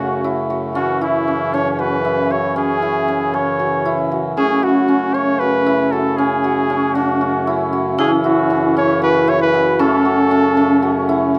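A solo flugelhorn leads this pensive, hypnotic piece of contemporary chamber music, singing a jazz-style melody between E4 and C#5 with a smooth top and vibrato, placed up front and warm in tone. Beneath it, a hammered dulcimer spins shimmering, ringing arpeggios in a narrow band from C#4 to F#4, sitting just as close as the horn. A pedal harmonium holds reedy, mellow sustained chords in the low register with a breathing quality, circling between F# minor and C#m over an F# bass. At 4.4 seconds a vibraphone with medium hard mallets adds a dark, metallic second line with a fast motor vibrato. The music moves in a straight 7/8 at 232 BPM counted in eighths, recorded with close, detailed microphones in a recital hall with moderate reverb. This brief excerpt is cut from a longer piece.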